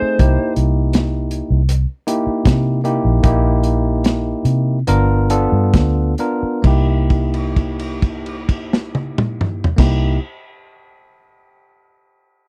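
Soulful and gritty, this short cut from a longer straight-eighth soul blues piece sits in a dry, close, 1970s-style studio sound with little reverb. A lightly driven lead guitar, picked, compressed and slightly broken up, sounds only a brief C5 at the very start alongside the rest of the band. A bell-like tine electric piano rings bright and clean in the accompaniment, while a vintage muted fingered electric bass, foam-muted, round and amped, holds down the low end. A crunchy breakbeat drum kit enters at 0.2 seconds with a tight kick, medium-tuned snare, toms, hi-hat and dark crash cymbal, its saturated, rolled-off top giving it a warm small-room character. The harmony moves from C7#9 to G7#9 as the groove slows down through the first section, then returns to C7#9 at 6.6 seconds, where a held note carries the closing passage.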